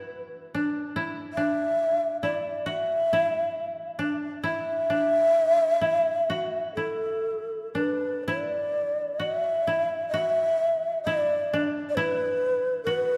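This is Japanese traditional chamber music, an austere and calm passage cut from a longer piece, drifting in a free rubato around 61-71 BPM in 4/4 within an E suspended pentatonic mode. A breathy bamboo shakuhachi carries the melody throughout, sitting up front between A4 and E5, its end-blown tone marked by vibrato, tongued attacks, an audible chiff and lifted highs that make the playing sound expressive. Beneath it, a koto plucked with fingerpicks supplies a quieter second line in a narrow, lower range from D4 to F#4, its acoustic sound dry and woody. Both instruments play the full 13.2 seconds, with the music shifting into a new section at 8.2 seconds. A moderate church-like reverb with a long 2.8-second decay surrounds the pair, and the overall production leans dark and warm.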